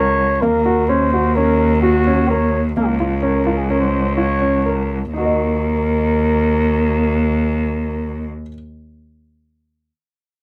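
Set in a straight five-beat metre, this brief contemporary instrumental passage, cut from a longer piece, pulls back in pace between 1.4 and 5.1 seconds, giving it a mood that is at once hypnotic and urgent. A grand piano plays arpeggios throughout, its tone clear and intimate, with the natural sound of its action audible. Beneath it, a single bowed cello holds a low bass line, focused and up front, with vibrato. A mellow flugelhorn carries the solo melody in a classical style, with light vibrato and a distant, roomy presence. The harmony moves from Ebm7 through Bbm/Db before settling on Ebm as a new section begins at 5.1 seconds. Close, detailed microphones and light reverb complete the sound.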